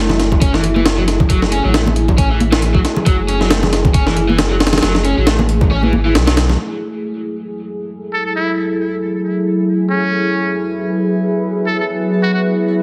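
A gritty, pitched-up sampler-style breakbeat kit leads this raw excerpt from a longer breaks piece, its thumpy kick, high-tuned snare and hi-hat sitting up front with studio reverb and a swung sixteenth feel. Bright, damped congas struck with hard hands, a crunchy double-tracked overdriven guitar riff with tape echo, and a deep, thick saturated sub bass fill out the opening groove; the guitar drops out at 6.3 seconds and the rest of the rhythm section follows at 6.6 seconds. A moody ambient pad holds sustained chords throughout, opening on F#m9, its detuned sawtooth layers, wave-folding and ring modulation pumping under sidechain and blurred by chorus and built-in reverb. Entering at 8.1 seconds, a solo trumpet with a metal mute plays a buzzy, thin pop-style melody with light vibrato, roughened by AM-radio filtering, 12-bit sampler grit and tape echo. The whole track sits in a heavily compressed, radio-like sound with a wet digital room reverb.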